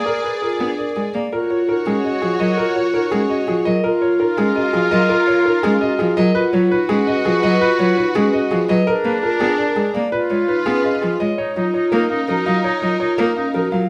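Set in a moderate large studio reverb, this short cut from a longer piece of minimalist classical pattern music in Eb minor sounds propulsive and bright, pulsing at 334 BPM in eighths across a straight 7/8. An intimate, up-front concert grand piano carries the melody with a deep bass and audible action noise, while a vibraphone played with soft mallets, motor off, spins ringing, metallic yet mellow arpeggios beside it. A distant, roomy solo oboe with light vibrato traces a second line beneath, and a symphonic violin section holds warm, bowed sustained chords with a smooth top. A single close, rich cello enters at 0.6 s with bowed accompaniment and vibrato. The harmony moves from Bb7 through Ebm11, Db9sus4 and Db7 before shifting to F#6 at 11.4 s for a brief new section.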